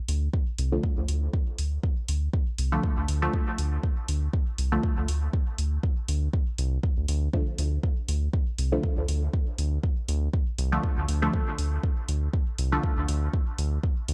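Nocturnal and meditative, this fragment of a longer dub techno piece settles into a single D minor chord with a lightly swung 4/4 pulse. A round, deep analog bass holds the low end from the start, its sustained, detuned tone sitting up front and breathing with sidechain pumping. An electronic kick drum arrives at 0.3 seconds with a layered, deep weight, joined throughout by a quieter electronic hi-hat, both carrying the boxy character of a small room. From 0.7 seconds a filtered dub chord stab adds muted, plucky hits with a short decay, drenched in chorus, phaser and dub echo and also breathing with sidechain pumping. The dark production wraps the whole groove in digital ambience, giving it a hazy, late-night depth.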